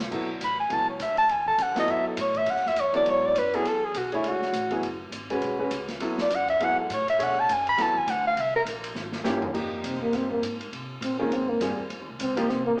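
This intense, searching modal jazz excerpt swings in 4/4 at 204 BPM in B dorian. It opens on a woody pizzicato upright bass, joined by a clear, open concert grand piano and an airy acoustic drum kit with dark cymbals and a boomy kick. A dark, breathy soprano saxophone with light vibrato and a whispered subtone leads up front until 8.6 seconds; after a drum fill the key moves to F minor at 9.5 seconds, where a mellow, intimate trombone takes the solo, the band playing live in one room with wet large-studio reverb and a small-speaker sound.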